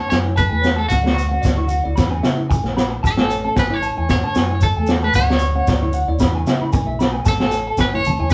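A carefree highlife guitar band opens with a twangy, scooped electric guitar melody shimmering with tremolo, a second, compressed electric guitar at the edge of break-up picking high arpeggios, and a fingerpicked flamenco guitar sitting softly in the background over a lilting swung groove. A round, punchy fingered bass and an up-front breakbeat kit, gritty and saturated with a tight kick, high-tuned snare and rolled-off top, join almost at once, along with a grainy, distant shekere, while the band cycles through Amaj7, Dmaj7 and E in a live room with moderate reverb. Bright, high-tuned congas slip in briefly at 7.9 s just before this short excerpt ends.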